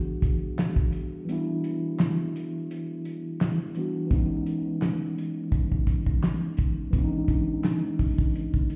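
Tough and dark, this short boom-bap hip-hop cut moves at an unhurried, lightly swung pace in four. A mellow tine electric piano carries the accompaniment in a clean, direct, up-front tone, filtered at both ends so it sits rounded in the middle register, moving from an Em7 chord to a C#m7 when the second section arrives at 4.1 seconds. A cloth-damped, thuddy acoustic drum kit comes in at 0.2 seconds with a fat snare, a tight kick, handclaps and hi-hat, its top end rolled off and its small-room character placed close to the ear. The kick drops out from 1.3 seconds until the section change, leaving the snare, claps and hats to carry the groove for a stretch. The whole mix is heard muffled as if through a wall, wrapped in a stone room reverb and dusted with vinyl crackle, giving this fragment of a longer piece its dark character.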